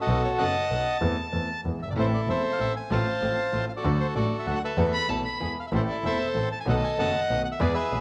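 A reedy, dark bandoneon carries the melody up front with a cassette-tape color in this passionate, elegant tango, cut from a longer piece, at 192 BPM in a rubato 3/4 and A harmonic minor, over an intimate concert grand piano with audible action noise and deep bass, a boxy bowed double bass sliding with vibrato, very quiet gut-string chamber strings adding period-style stabs from 2.0 s, and a smooth-topped solo violin line appearing briefly at 4.9 s, set in a lush hall reverb on a home cassette recording.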